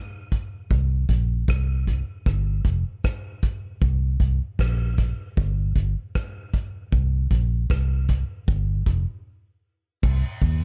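A dark, dry production carries this hypnotic, meditative dub reggae excerpt at 77 BPM in 4/4, where a vintage drum kit enters at 0.3 seconds with punchy kick, hi-hat, rim click and crash cymbal, its rolled-off top and pumping small-room sound up front, joined at 0.7 seconds by an amped, round, foam-muted fingered electric bass moving between F1 and Eb2, until a break arrives at 9.3 seconds.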